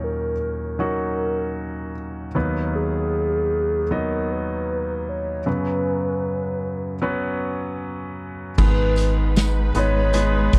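A hollow, woody synth lead with a clarinet-like tone and gentle vibrato sings the melody over an intimate concert grand piano, whose audible action noise and long sustain sit up front in this longing, emotional pop ballad in G# minor at 77 BPM. The piano moves through D#m7, B/D# and F#sus4 while the lead's chorus effect lends it a soft shimmer. At 8.6 seconds the arrangement opens up as the harmony lands on G#m: a deep, full sub bass with an octave layer, a punchy, loose indie drum kit with kick, medium-tuned snare, hi-hat and crash in a pumping small room, and lush bowed strings set in the background all enter together. A very quiet, jingly tambourine joins at the same moment and drops out at 10.3 seconds. The production is dark with little reverb, keeping every part close, and the cut ends just as this fuller passage gets underway.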